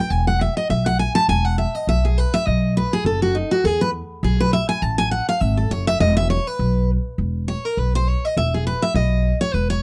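Bluegrass at a brisk 203 BPM in E major, this lively, driving passage is cut from a longer piece and swings its eighth notes lightly in 4/4. A picked steel-string acoustic guitar carries the whole stretch as a solo. It has a full-bodied dreadnought tone with audible finger squeak, sitting up front and ranging from D#4 to A5. Beneath it, an upright bass played pizzicato on steel strings gives a woody, thumpy low end, dark in color and also placed up front. The harmony moves through E5, B and F#m9 across two matching sections, the second beginning at 4.8 seconds. The sound is dry and close, with little reverb, in the manner of a 1970s studio recording.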